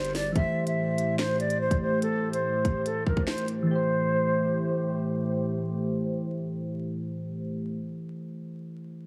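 Menacing and cold, this short cut of half-time drill hip hop at 144 BPM in A minor opens on an Am7 chord, with an airy, vibrato-tinged concert flute carrying the melody through tape echo while round, gently decaying electric-piano-like synth keys and a dark, detuned, warbling pad hold the harmony. A drill kit of hard-clipped kick, sharp snare, crisp hats and handclaps sits up front before dropping out at 3.6 seconds, and the flute falls away at 4.9 seconds, leaving the keys and pad. A filter sweep runs through the opening section, and the whole track carries a heavily compressed radio tone, vinyl crackle and light digital reverb.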